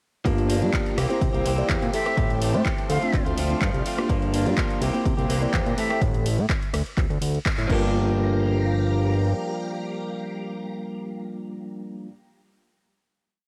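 This filtered disco house piece has a sensual, nostalgic mood, built on a straight four-on-the-floor pulse with the character of a home cassette recording in a light reverb. A punchy, tape-warm electronic kick and a programmed house kit of closed and half-open hats, ride, claps, rim clicks and a crash drive the drop from 0.3 seconds, with a band accent at 7.5 seconds before the drums stop at 7.8 seconds. Up front, a fat, nasal, detuned analog bass plays a funky syncopated line with sidechain pumping, holding on until 9.3 seconds. A clean, direct-recorded electric guitar strums sixteenths in upper chord shapes, while a mellow tine electric piano pumps out a phased rhythmic chord riff and a swirling, vintage string machine hangs in the background with bright sustained chords. A pure, distant silver flute with vibrato and tape echo adds short answering phrases from 1.9 seconds, and the guitar, keys and strings carry the final hit to the close.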